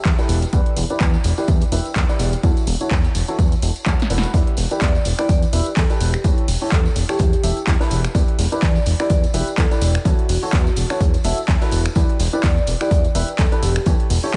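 Piano house at 126 BPM in E dorian, energetic and bittersweet with a swung 16th feel, driven by an overdriven, up-front electronic kick, a punchy analog drum machine of finger snaps, handclaps, hi-hat and snare, a background tambourine and a fat, nasal sawtooth bass pumping with the sidechain, while a clear, woody upright piano riff with audible action noise runs through chorus, low-pass filter, delay and the same pumping over chords moving from A7/E through G6/E and F#m7/E to Em7, a very quiet acoustic fusion kit with a high-tuned snare joins after a drum fill at 4.3 seconds, and a metallic, ringing vibraphone melody with slow motor vibrato enters at 4.8 seconds, all set in light reverb.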